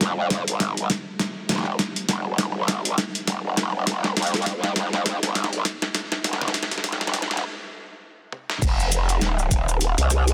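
Swung sixteenths at 101 BPM drive this funky, swaggering glitch hop fragment in F minor, where a gritty, pitched-down boom bap drum kit with a medium-tuned snare, rim clicks, shaker, toms, hi-hats and crashes sits up front in a small room, over a very quiet, thumpy electronic kick. A growling, aggressive growl bass wobbles through a formant filter, bright and saturated with chorus, as drum fills and a filter sweep push a build-up that halts in a stop at 7.4 seconds before the drop lands at 8.6 seconds. A lush hall reverb surrounds the tape-warm sampler sounds, and the master is dense and heavily limited.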